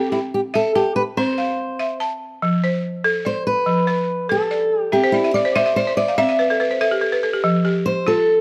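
A dark, fingerpicked steel-string acoustic guitar with audible finger squeak carries the melody up front in this joyful West African string and xylophone excerpt in a straight 12/8, over a woody, dry, buzzing balafon struck with rubber mallets that plays arpeggios through the C and F changes and adds a fill from 4.9 to 7.4 seconds, all captured with close, detailed microphones and light reverb.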